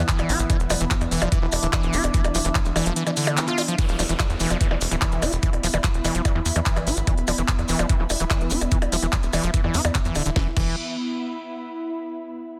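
Driving and hypnotic, this psychedelic trance excerpt at 146 BPM opens on a drop where a ring-modulated drone with shifting overtones hums in the background until 3.8 s, as a squelchy, gritty distorted acid bass riff with delay rides over a tight, punchy sawtooth sequencer bass up front. A knocking layered kick, a techno kit with cracking snare, smooth hats, handclaps, crash and percussion blips, and grainy, mellow maracas drive the groove beneath an ethereal, airy detuned pad with ensemble chorus and sidechain pumping, while a very quiet downlifter and a filter sweep on the synth bass arrive at 3.8 s in a dense, heavily limited modern master.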